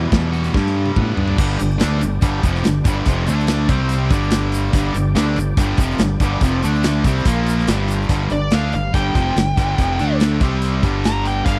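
A growling, up-front fingered bass drives this swaggering classic rock excerpt, joined from the start by two bright, overdriven picked guitars playing riffs, one of them crunchy and set in the background, over a big rock drum kit with a punchy kick and a rolled-off top that plays a fill before 1.4 seconds. There a very quiet, gritty tonewheel organ enters with thick sustained chords through a slow rotary speaker, alongside a grainy tube shaker that plays until 8.1 seconds. At 8.3 seconds a bluesy, distorted lead guitar takes a solo with wah and tape echo, all in a dry, close 1970s-style studio sound with a small room reverb.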